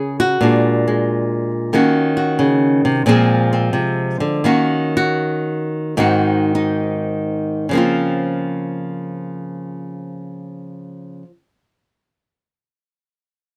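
A bright, fingerpicked flamenco guitar with fresh strings plays up front and alone in this sophisticated, playful solo jazz excerpt in Db major, swinging in 4/4 at 64-92 BPM, slowing down between 1.7 and 7.7 seconds as it moves through Ebm7, Bb9 and Ab7 before settling on a Dbmaj13, all captured with close, detailed microphones and little reverb.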